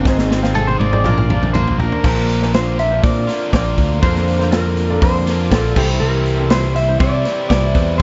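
A short cut from a longer folk rock and heartland rock piece opens with a slightly broken-up, lo-fi electric guitar carrying the melody through a small old amp. Beneath it sit a shimmering, octave-doubled twelve-string acoustic in the background, a bright, double-tracked overdriven riff guitar and an up-front picked electric bass. A natural country drum kit with a punchy kick and medium-tuned snare plays a fill from 0.1 to 2.0 seconds, while a jingly, close tambourine adds a brief touch. From 0.6 seconds a clean pedal steel, played with fingerpicks and volume swells, slides in a second line. A very quiet grand piano with long sustain fills out the accompaniment as the chords move from Ab and Bb to Bbadd9 and finally C at 5.8 seconds. At a straight 121 BPM, the mood is nostalgic yet hopeful, with a dark, warm production and light small-room ambience.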